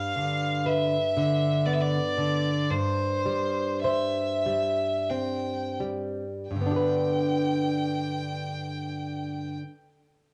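A bowed violin and a fingerpicked nylon-string guitar begin together in this short, tender fragment of a romantic duo in G major, moving in a rubato 3/4 at a slow 41 to 62 BPM. The violin carries the lyrical melody between C5 and G5 with a clear, focused tone and vibrato, while the classical guitar accompanies beneath it from G2 up to C5 with a warm, acoustic sound. Both instruments sit up front, each colored by the soft grain of cassette tape. The harmony moves from G7 to C/G at 2.7 seconds as the tempo slows, then a new passage opens at 6.5 seconds on a settled G chord. Light reverb and small room ambience give the home cassette recording an intimate, close feel.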